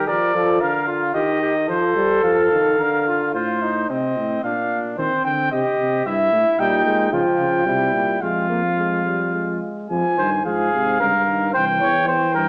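In a straight 3/4 at 110 BPM, this solemn, serious brass canzona cut from a longer piece sets a vintage-toned trumpet melody up front over a mellow, lightly vibrato flugelhorn second line, with a dark trombone accompanying until 3.3 s and again from 6.6 s while a smooth-topped bass trombone carries the bass from 3.3 s, settling into F minor from 6.6 s in a wet recital-hall reverb heard through a small-speaker sound.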